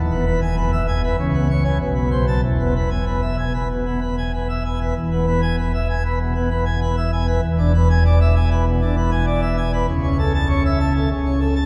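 A pipe organ on full plenum, its mixtures drawn for a brilliant, romantic voicing, carries this short classical toccata as the sole instrument, reaching from a deep E1 up to A5. The mood is brilliant and majestic, moving in a steady, straight 4/4. The opening passage settles on E before passing through C#5, Amadd9/B and back to E. At 5.0 seconds the music moves into a new section that reaches an E7 at 7.4 seconds and lands on A/C# at 9.9 seconds. The organ sits up front in the balance, yet the recording places the listener further back in a cathedral whose long, wet six-second reverb blooms around every chord, and lossy compression artefacts color the sound. The clip is cut from a longer piece and ends at 11.7 seconds.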